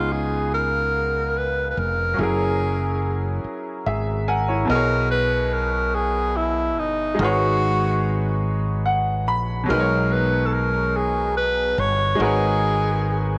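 A breathy tenor saxophone carries the melody up front, its whispered, intimate tone shaped by vibrato, soft attacks and scooped notes, with a smooth top and a touch of tape echo. This is slow R&B in a six-eight, yearning and sultry in mood, and it sounds like a fragment lifted from a longer piece. A brilliant baby grand piano supplies the accompaniment, with a natural, sparkling clarity, and steps forward with short fills at 3.4 and 8.4 seconds. Underneath, a fretless electric bass sits close and dark, round and punchy in its low register. The harmony drifts through lush extended chords such as C#13, F#9, B69 and G#m11, moving into a new section at 4.7 seconds. A moderate plate reverb with a long tail surrounds the band, and the overall sound is gently rolled off at the top.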